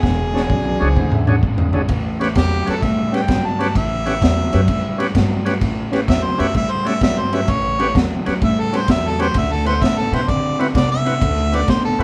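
An up-front harmonica, overdriven and carrying light vibrato and scooped notes, takes a jazz-style solo from 1.9 seconds to the end of this laid-back, rollicking electric blues shuffle in A mixolydian at 129 BPM, swung in 4/4. It opens over a drum fill from a crunchy, saturated breakbeat kit with dark cymbals, a high-tuned snare and a punchy kick, while a raw garage guitar plays an overdriven, picked riff and a woody, growly pizzicato upright bass holds the low end. An overdriven tonewheel organ joins at 0.3 seconds with a thick, gritty tone, key click and a slow rotary speaker. A clear, boxy upright piano with audible action noise adds a brief second line in the background until 1.8 seconds. The chords move from E13 to A13 and then to D13 at 9.3 seconds, and the band sounds as if playing live in one room with moderate studio reverb on this short cut from a longer piece.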